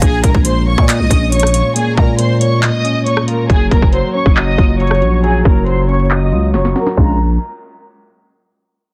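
A half-time 4/4 pulse at 138 BPM drives this menacing, dark trap cut in Bb minor, where an up-front electronic kit of hard-clipped kick, sharp snare, metallic hats, handclaps, rim clicks and crash sits beside a growling, buzzy 808-style bass, while a lush, woody violin section bowed sul tasto with vibrato carries the melody through digital delay over a worn, slightly out-of-tune tine electric piano moving from Bbm7 to Gbmaj7, set in a dense, dry, heavily limited master under a filter sweep spanning the first seven seconds, with a drum fill arriving at 6.5 seconds.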